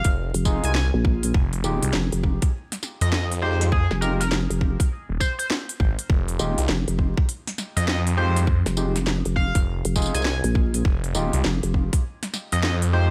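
A thick, swirling detuned saw bass sits up front in this swaggering, playful glitch hop excerpt, its sawtooth tone saturated through tubes and coloured by a phaser. Beneath it, a nasal, resonant wobble bass shaped by a vowel-like formant filter and chorus enters at 0.3 seconds, adding a dark, compressed low end. The beat pairs a tight, up-front electronic kick with a layered kit of cracking snare, crisp hi-hats and tambourine, both tape-toned and set in studio reverb over a swung sixteenth-note feel. Overdriven, barky tine electric piano stabs arrive at 0.5 seconds, gritty through a combo amp, with subtle chorus, sidechain pumping and dub echo. Higher up, an edgy, tearing oscillator-sync lead carries the melody with vibrato, chorus and dub echo, while the passage holds on a single Fm9 chord above a bed of vinyl crackle.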